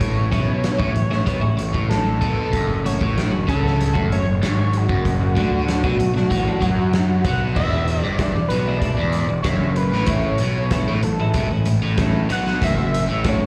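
A bold, retro octave-doubled lead with a sawtooth edge, vibrato, chorus, phaser and slapback echo opens this bittersweet, moody indie rock excerpt at 95 BPM, over a crunchy overdriven guitar riff, punchy fuzz picked electric bass and a raw garage drum kit with a fat snare and gritty, saturated tone, while a twangy, clean twelve-string electric guitar with lush chorus and slapback echo joins in the background at 0.2 s, the band captured as a live gig through the venue's PA with club reverb over chords moving from Amaj7 through F#m7 and Bm7 to E7.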